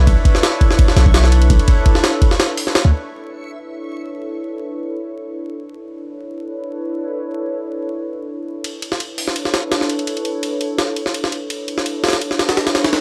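A gritty, compressed jungle break with a thumpy kick and high-tuned snare drives this atmospheric, raw drum and bass cut in B minor at 168 BPM. It opens on a drop where a deep sine 808 bass sits under a warbling, nostalgic tape-like pad on a Bm11 chord, with a reversed, dreamy granular texture floating above. Drums, bass and texture fall away around 2.9 seconds, leaving the pad under a filter sweep until the drums return at 8.6 seconds, all in a dry, saturated hardware sound with vinyl crackle.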